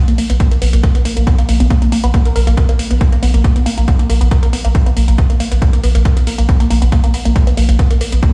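Dry and loud, this sounds like a big sound system playing in a bare stone room, in a short cut from a longer piece of dark, intense, driving peak-time techno in a straight four. A round, sine-like sub bass pumps under a punchy kick that sits up front from 0.4 seconds, while metallic hats tick in the background, the hats and bass both ducking to the sidechain. Above them, a lush, detuned sawtooth unison pluck with a noise layer carries the riff, roughened by overdrive and moved by phaser, a filter sweep, a shifting notch and digital delay.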